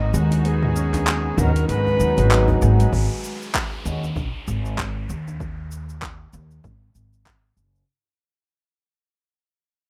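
Organic downtempo in G# minor at 97 BPM with a swung 4/4 feel, mystical and meditative, where an airy, reedy cedar flute melody with delay floats over ringing, fingerpicked Celtic harp arpeggios, sidechain-pumped clear bowed strings in the background and a woody, growly pizzicato upright bass pumping up front, while a layered deep house kit of handclaps, hi-hat, shaker and toms and a very quiet djembe with metal rattles keep time; a breathing, mellow pedal harmonium enters at 1.4 s, and at 2.9 s the harmony settles from G#m7 to G#m as a punchy electronic kick and an electronic downlifter arrive and the fragment fades out through a rough home-demo mix with moderate plate reverb and small-room ambience.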